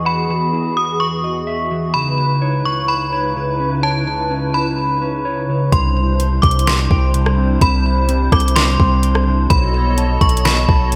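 A half-time 4/4 groove at 127 BPM drives this dreamy, blissful slice of atmospheric cloud-rap, cut from a longer piece. From the start, a hollow, flute-like pad sustains chords through ensemble chorus, sidechain pumping and a low-pass filter, while a dark, clean electric guitar plays fingered arpeggios through filtering and delay, moving from Emaj9 to C#m9. At 0.1 seconds a metallic, inharmonic FM bell enters up front with a bright, ringing melody in a high register, carried by chorus, delay and a long release. At 5.7 seconds the harmony shifts to C, and a deep, sine-like 808-style bass joins alongside a smooth electronic R&B kit with soft kick, deep snare, rim click and metallic hats, both sitting forward in the mix. The chords close on B7, and a lush hall reverb soaks the whole dreamy mix.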